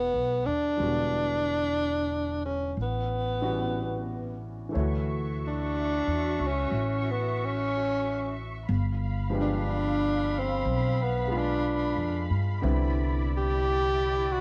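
A breathy tenor saxophone opens this tender, late-night jazz ballad up front, with a subtone sound, vibrato and scooped notes, over an upright piano and pizzicato upright bass. The tempo is a slow 61 BPM in 4/4 with a swung eighth-note feel, centered in A major, and the harmony moves through rich chords such as Amaj13, Dmaj9 and G7b9. The piano sounds close and polished, its action noise audible, while the bass is woody and acoustic with steel strings, sitting near the front. At 4.7 seconds the saxophone moves into a solo, and a muted symphonic string section enters with lush, veiled sustained chords, bowed con sordino with soft attacks and a smooth top. Saxophone, piano and strings carry a cassette tape coloring, with the horn and piano also bathed in plate reverb, and the home recording sits in a moderate small-room ambience.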